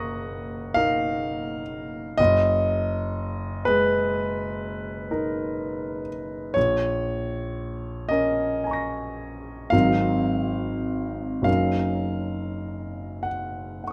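A clear, intimate concert grand piano plays alone throughout this 13.9-second excerpt of a serene, dreamy impressionist classical piece, moving freely in rubato within a 9/8 metre and spanning from deep bass notes to the high treble. Lush, extended chords drift from F#6 through G#m9/F# and A#m7 to G#9 before settling back on F#6, rendered with a natural tone. Close, detailed microphones place the instrument up front, capturing audible action noise, while a moderate recital-hall reverb adds a gentle halo around each chord.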